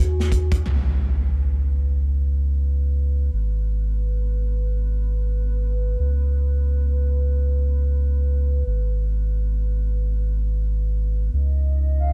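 In free time, this melancholic, hypnotic trip hop excerpt rests on a round, deep dub sub bass held up front beneath a moody, detuned analog pad with subtle chorus moving between G#m and Bsus2/C# chords, while a punchy acoustic drum kit sounds only briefly at the start, an electronic impact hits from 0.7 to 3.3 seconds, and a pure, breathy sine lead with tape echo appears in the background at 12.0 seconds, all in a dry, close mix.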